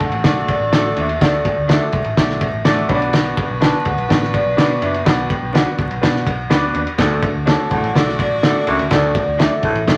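A mellow, ringing vibraphone carries the melody over a thuddy, cloth-damped drum kit, round foam-muted electric bass, intimate grand piano with a short fill at 6.3 seconds, a background saxophone section, and faint slightly broken-up guitar stabs in this warm, danceable uptempo 1960s-style soul excerpt at 125 BPM in D major, where a raspy, growling baritone saxophone riff enters at 7.0 seconds amid wet studio reverb and vinyl crackle.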